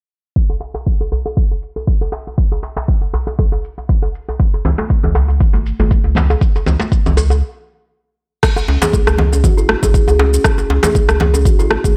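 An overdriven kick sits up front with a deep house kit of crash, rim click and shaker from 0.4 s, joined by tight, cracking djembe, all under a filter sweep in this driving, warm afro house excerpt; at 4.6 s a round, nasal analog bass with sidechain pumping and small-room congas arrive, and after a brief stop a woody, hollow kalimba enters at 8.7 s with 12-bit sampler grit, pumping, tape echo and its own filter sweep, in a dry mix.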